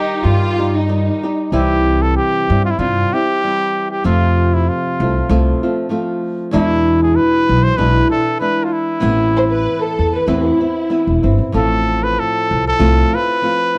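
Romantic and festive, this mariachi excerpt sets a clear, soft-attacked trumpet melody in classical style over fingerpicked flamenco guitar and a woody pizzicato upright bass, with a gentle swing in 4/4. A dark, lush bowed violin section adds a second line with vibrato during the first 1.5 seconds, then returns from 9.4 to 11.4 seconds while the harmony rests on Amadd9. The dry, close 1970s-style studio sound keeps every part up front.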